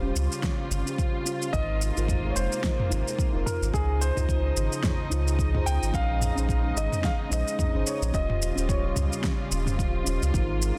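A round, sine-toned sub bass sits up front in this smooth, relaxed sunset chillout excerpt, its fast attack and sustained notes anchoring the low end from the opening moment. Around it, a soft FM electric piano with a faint noise layer, chorus and delay plays full-bodied, decaying chords. A veiled, con sordino string section bows sustained harmony beneath it with light vibrato. A deep house kit of shaker, fat snare and toms arrives at 0.2 s, with a layered, tape-tinged electronic kick joining at 0.4 s under a lightly swung sixteenth-note feel. At 1.5 s a dark, mellow grand piano enters with the melody, roughened by vintage 12-bit sampler grit and trailed by delay, as the harmony drifts through lush extended chords from Eb13 to Dbmaj9 and Bbm11. Light digital ambience surrounds the parts, and the master is dense and heavily limited.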